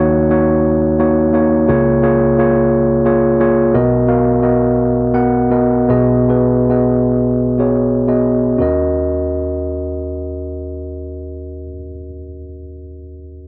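A dry, close recording with the feel of a 1970s studio places a single instrument up front, captured in a short section cut from a longer piece. That instrument is an overdriven tine electric piano played solo through a combo amp, its tone gritty, ranging from deep bass notes up into the upper middle register. The music is folk in 6/8 metre with a straight feel, and the mood is intimate and melancholic, built on dark minor-seventh harmonies that drift to a major-seventh chord and back. The pace slows between 3.7 and 8.6 seconds. At 8.6 seconds a new section begins, returning to the opening Ebm7 chord and carrying the piece on until the clip ends at 13.5 seconds.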